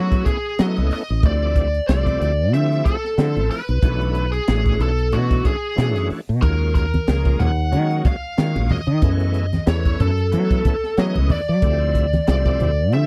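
Electric jazz fusion at 92 BPM in 4/4, with a light swing on the sixteenths and a nocturnal, slick mood, cut from a longer piece. A bluesy, overdriven lead guitar carries the melody, its picked, distorted tone given a slapback echo, while a bright tonewheel organ fills in the harmony with a full, shouting sound shaped by chorus vibrato and a slow rotary speaker. Underneath, a woody fretless electric bass sits up front in the mix, growly and round with a hollow-body character and analog chorus. A crisp drum kit with a high-tuned snare, punchy kick and hi-hat plays in a small, pumping room, and congas with a thick-skinned, low-tuned, close and dry sound join at 6.9 seconds. The harmony moves through minor eleventh chords, starting on Gbm11 and passing through Dm11, Bm11 and Ebm11 before returning, all in a dry setting with little reverb.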